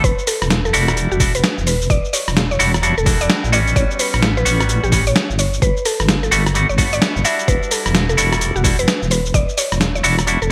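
Moody and soulful, this short cut of two-step UK garage moves at 129 BPM in E dorian, its swung sixteenths giving the groove a loping shuffle. A deep, dark wobbling bass with chorus and tube saturation sits up front beside a gritty, pitched-down sampler-style kit of hi-hat, rim click, shaker and medium-tuned snare, overdriven and washed in gated reverb. An overdriven, thumpy electronic kick anchors the beat until 9.5 seconds. Bright, twangy stabs from a clean electric guitar carry digital delay, while a woody, round mallet-like synth pluck with chorus and delay sings the melody between F#4 and E5. The harmony moves from Em9 through A13 and Gmaj9 before settling back on Em9 at 7.5 seconds. A moderate plate reverb and bright 1980s-style digital sheen frame the whole mix.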